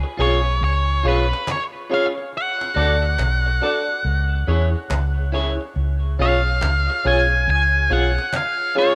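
Roots reggae with a laid-back, meditative mood, cut from a longer piece, in which a dark, fuzzed lead guitar sits up front with distortion, tube saturation and dub echo, carrying the melody from 0.2 seconds. Beneath it, a round, foam-muted fingered electric bass anchors the low end, while a bright, twangy clean electric guitar with tremolo and dub echo supplies accompaniment, a mellow upright piano adds short-sustain stabs, and a woody cajon with hard hands and faint snares keeps time. The rough home-demo mix carries a light studio reverb, and the chords move between C#, D and C#m.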